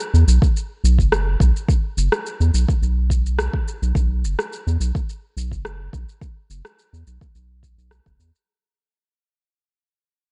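An overdriven, layered electronic shaker and rim click open this hypnotic organic downtempo excerpt at 106 BPM in 4/4, joined almost at once by a round, nasal analog bass with sidechain pumping, ranging from F#1 to E2, and by a deep, up-front electronic kick from 0.4 seconds, set in a dark, dry production that fades out across this brief cut from a longer piece.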